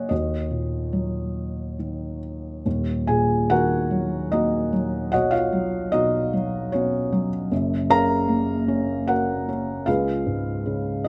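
A flexible, rubato pulse in three gives this lyrical classical solo piano passage its unhurried, breathing quality. The mood is reflective and dark, carried entirely by a felt-muted upright piano that plays alone from 0.0 to 11.1 s, spanning a range from Eb1 to Bb5. Its thick felt gives the tone a soft, mellow, intimate character, and it sits up front in the sound. The opening idea is stated briefly and then returns at 2.7 s. The harmony moves from the home minor chord through Badd9, Gbmaj7 and Db7, with the instrument tuned slightly low to A4 = 438 Hz. Close, detailed microphones capture the piano within a moderate recital-hall reverb, and the passage is cut from a longer piece.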